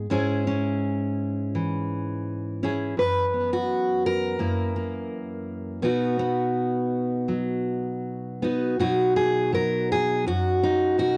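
Played rubato in a loose 4/4, this short folk passage, cut from a longer piece, features a lone fingerpicked steel-string jumbo acoustic guitar with a nostalgic, hopeful mood. The guitar sits up front with a bright, full-bodied tone and audible finger squeak, moving through C#m/G#, F#7sus4 and F#7 before settling on B at 5.8 seconds, and shifting into a new section at 8.8 seconds. The home cassette recording carries tape character and a modest booth ambience.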